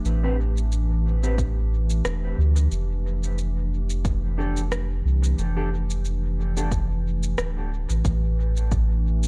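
Ambient dub excerpt with a spacious, meditative mood: a warbling, nostalgic lo-fi pad holds detuned chords with chorus and reverb, a deep, round sub bass sits up front, and overdriven electronic shaker and rim click are soaked in dub echo. Clean, dark electric guitar stabs carry lush chorus and echo until 6.7 seconds, an overdriven, layered electronic kick drum enters at 1.4 seconds, and the whole piece sits in an echo-heavy digital ambience.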